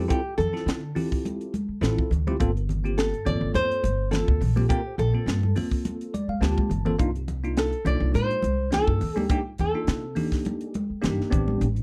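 Electric jazz fusion with an intense, nocturnal mood at 104 BPM in 4/4 with a light sixteenth-note swing, this excerpt sets an up-front, boxy fingerpicked flamenco guitar melody with audible finger squeak and slapback echo over a bell-like tine electric piano treated with phaser, woody pizzicato upright bass, a polished fusion kit with a high-tuned snare and tight kick, and thin-skinned congas, with an electric piano fill from 5.8 to 7.0 seconds and a drum fill joining at 6.3 seconds, as minor eleventh chords move from Dm11 through Gm11 and Cm11 to Am11 in a dry, close 1970s-style studio sound.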